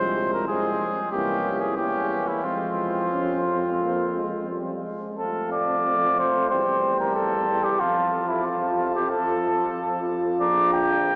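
Classical brass quintet music at 90 BPM in 4/4 with uneven beats, heroic and solemn, moving from F minor into F major at 5.2 seconds in this short cut from a longer piece. The trumpet carries the melody over an up-front flugelhorn second line with light vibrato and a vintage tone, while a punchy, smooth-topped French horn and a soft-attacked, close-miked trombone sit in the background as accompaniment, and a distant, roomy tuba with vibrato holds the bass. All five play throughout, bathed in a lush cathedral reverb that places them in a church or concert hall, though the overall sound comes across as if through a small speaker.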